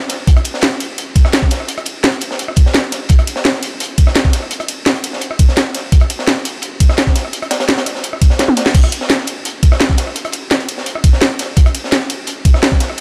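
A straight 170 BPM drum and bass groove in 4/4 carries a dreamy, uplifting feel across this short cut from a longer piece, built from a knocking, up-front electronic kick, a layered electronic kit with cracking snare, bright hats, crash, ride, rim clicks and toms, and a quieter, gritty, saturated acoustic breakbeat kit whose high-tuned snare and high-passed hats sit dark and rolled-off beneath, all under light reverb, with a quick drum fill at 8.4 seconds.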